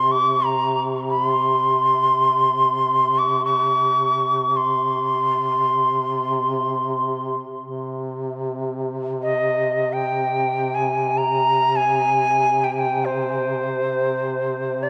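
A breathy, bright end-blown ney carries a passionate, stately melody in free time over a mellow duduk drone on C, the two sounding together from the start in this Arabic maqam saba passage cut from a longer piece. The ney sits up front with vibrato, a crisp attack and a touch of tape echo, while the duduk holds its folk-style drone with its own vibrato. A long plate reverb soaks the mix in a dreamy haze across all 14.9 seconds.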